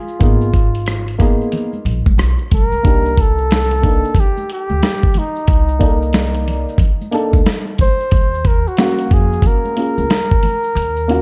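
A breathy flugelhorn opens this smoky, cool jazz-hop excerpt at 0.0 seconds, carrying a mellow solo melody with light vibrato, a soft attack and an analog delay trailing its notes. Soft-handed maracas and congas sit in the background with a vintage, band-limited tone, and by 0.2 seconds a dark upright piano, woody upright bass and a dusty soul sampler-style drum kit have joined. The piano is intimate and slightly detuned, with audible action noise and long sustain, while the pizzicato bass adds a warm, steel-stringed low end. Up front, the gritty, compressed kit lays down a swung sixteenth-note hip hop groove of thumpy kick, medium-tuned snare, rim clicks and hi-hat, re-recorded in a large room. The harmony moves from Abmadd9 through Cm9 to Ebm9, the kick drops out at 10.8 seconds, and light reverb and studio ambience give the whole production a dark, warm finish.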